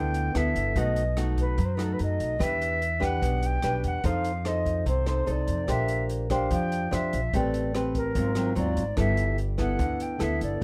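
Bossa nova at 146 BPM in G major, sunny and breezy, with an airy, distant flute singing the melody over a full-bodied, fingerpicked nylon-string guitar and a woody, pizzicato upright bass set up front, while an open jazz kit with a boomy kick, hi-hat and rim click enters at 0.1 seconds, all in light reverb through close, detailed microphones as the chords move from G69 through B7, Em7, F7 and Bb69 to Am9 and Ab13 before settling back on G69 at 9.0 seconds.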